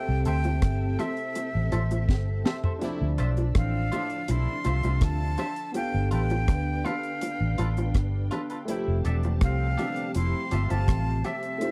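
Opening on a C6 chord, this tender, sweet lovers rock reggae excerpt has a breathy, bright flute singing the melody through tape echo, over a lush string machine with ensemble chorus and a barky tine electric piano colored by phaser. A round, foam-muted bass and a deep, dry drum kit with a high-tuned snare and tight kick sit up front, joined by twangy guitar stabs in spring reverb and low-tuned bongos, with a drum fill at 2.1 seconds. A clear, punchy horn section enters at 2.8 seconds as the chords move through Dm9, G9 and Fmaj9, all captured in a close, 1970s-style studio sound.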